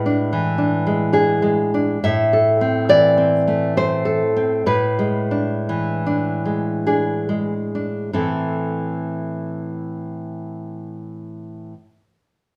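Romantic solo classical guitar in a rubato 3/4, intimate and melancholic: a single full-bodied, fingerpicked nylon-string guitar with fresh strings sits up front in a moderate large-studio reverb, moving between E7/A and A minor as the pace slows from 0.7 to 8.2 seconds before a new section opens on A minor at 8.2 seconds in this short passage cut from a longer piece.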